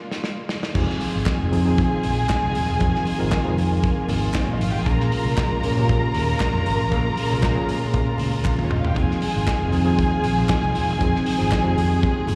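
A dark, woody string section opens this driving, glamorous disco cut on a Bbm7 chord while the drum kit plays a short fill through the first 0.8 seconds. The groove then settles onto Fm7 in F minor at 117 BPM: a punchy fingered electric bass, a worn, slightly out-of-tune tine electric piano comping with a mellow tone, and a soft layer of thick-skinned congas. Above the sustained strings, a lush violin section carries a second line, bowed sul tasto with vibrato and sounding distant, trailed by a slapback echo. The up-front soul kit has a tight kick, a medium-tuned snare and dark cymbals with a rolled-off top, and it adds another fill around 8.4 seconds. Hollow, close and dry group handclaps sit in the background, and the whole piece has the feel of a live gig heard through the venue's PA, with a recital-hall reverb.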